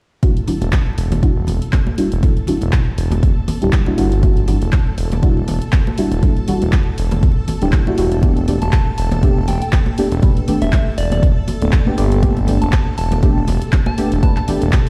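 Deep and smooth, this deep house clip rides a swung groove built on an overdriven, punchy electronic kick up front, with dry analog drum-machine handclaps and hi-hat plus ringing, hard-handed congas further back, all set in a bare-room ambience with large reverb and vinyl crackle. Dark, detuned chord stabs carry a filter sweep throughout, with chorus and analog delay, pumping alongside a smooth, sawtooth-edged synth bass that enters at 0.6 seconds, while a shimmering vintage string-machine pad sits in the background as the harmony moves from Em9 to Gadd9. At 8.6 seconds a soft, pure FM bell melody arrives, coloured by phaser, chorus, delay and a touch of 12-bit sampler grit.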